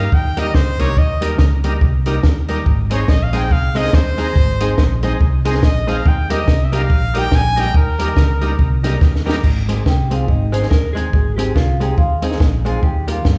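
A swung, bouncy ska groove in 4/4 opens this cheerful excerpt, driven by a punchy, high-tuned compact cocktail kit and a round, fingered short-scale hollow-body bass, while a clean, compressed hollow-body jazz guitar comps through a dub echo and an overdriven tonewheel organ adds gritty stabs through a slow rotary speaker. A clear, close-miked trumpet carries the melody with light vibrato until a drum fill at 9.0 seconds hands the lead to a mellow, dark electric guitar with phaser, played with the fingers. The whole band sounds like it is playing live in one room, bathed in a generous large-studio reverb with a softly rolled-off top.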